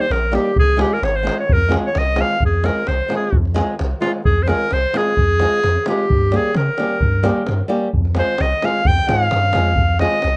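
A bright, classical-style clarinet sits up front and carries the melody, opening into a virtuosic solo from 2.4 s to the close of this short cut from a longer Balkan wedding-band folk piece in F minor at 130 BPM in a straight 2/4, tuned slightly high to A4 = 441 Hz. Beside it, a boxy, fingerpicked flamenco guitar, also up front with audible finger squeak, plays the accompaniment, while a deep, punchy sine sub bass with a pitch-drop attack holds sustained low notes. A tight davul sounds distant in a large room, and light reverb frames the bittersweet mood as the chords move from Eb and Db to Fm and Gdim.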